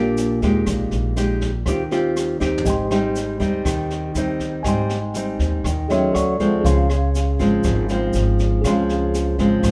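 A straight 4/4 bossa nova groove at 121 BPM sets a romantic, sunny mood in Ab major, in this clip cut from a longer piece. Up front, a nylon-string guitar is fingerpicked in a classical manner with fresh strings, while a woody, thumpy pizzicato upright bass on gut strings holds down the low end. A distant, roomy jazz kit played with brushes adds a high-tuned snare, boomy kick, rim clicks and toms with a rolled-off top, and a grainy tube shaker sits in the background. After a short drum fill at 2.4 seconds, a mellow, clean tine electric piano heard through its built-in speakers enters at 2.6 seconds and later plays a brief fill starting at 5.9 seconds. The harmony glides through lush major-seventh and suspended chords, from Ebmaj7 to Abmaj7 and on to Dbmaj7, all set in a light reverb.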